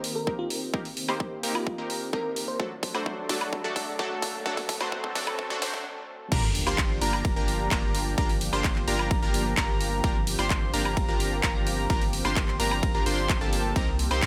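A punchy, overdriven electronic kick drives this emotional, powerful festival progressive house excerpt in G minor at 129 BPM, where a detuned supersaw stab riff with tape echo and a big-room drum kit of crash, ride, hi-hat, handclaps and woodblock carry a build-up, with a drum fill, filter sweeps and a faint riser and sub drop, over a lush, warbling background pad, while a bell-like FM electric piano melody sparkles briefly at the start, until the drop at 6.3 seconds brings in a catchy, plucky arpeggiated lead with vibrato and a deep, saturated sub bass, with the pad, stab, lead and bass pumping together beneath light reverb.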